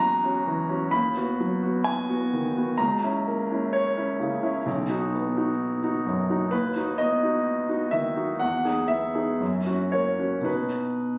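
Played with free rubato over a slow 64 BPM pulse in 4/4, this 11.2-second passage from a longer romantic character piece for solo piano unfolds in B major with a passionate, warm mood. A clear, natural grand piano sits up front and spans B1 to B5, its action noise audible in an intimate phone recording softened by light reverb and compression. The harmony moves from F#7 over E through B/D#, A#dim/C#, Emaj7 and F#7 before settling on B at 10.5 seconds.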